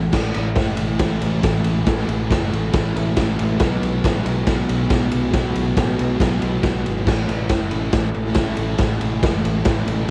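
Fuzz guitar and bass open this swaggering, rowdy garage rock excerpt in a straight 4/4, with the raw drum kit joining at 0.1 seconds, pounding out kick, snare, ride and crash. The kit sits up front with a punchy kick and a medium-tuned snare, its sound saturated and gritty with a rolled-off top, caught in a bright stone room that pumps around it. A thick, double-tracked fuzz guitar picks a distorted riff through the low register, shifting from A5 to B5 at 3.6 seconds and back to A5 at 7.1 seconds, with a cassette tape coloring on its tone. Underneath, a fingered electric bass holds the low end with a direct, overdriven sound. The whole performance has the rough-edged feel of a home cassette recording in a small room.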